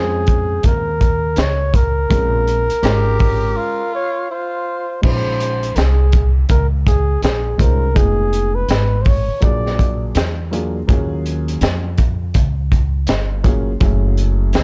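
A crunchy breakbeat drum kit with vintage 12-bit sampler grit swings at 82 BPM in 4/4 under this mellow, nocturnal jazz-hop cut, moving from Bb dorian to Bb minor at 5.0 s, as a woody, thumpy pizzicato upright bass with tube saturation and a dark, worn baby grand piano with audible action noise support a breathy, close-miked flugelhorn melody with scooped notes until 10.1 s, which a growling, raspy tenor saxophone briefly joins from 2.8 s, all captured in a dry hardware recording.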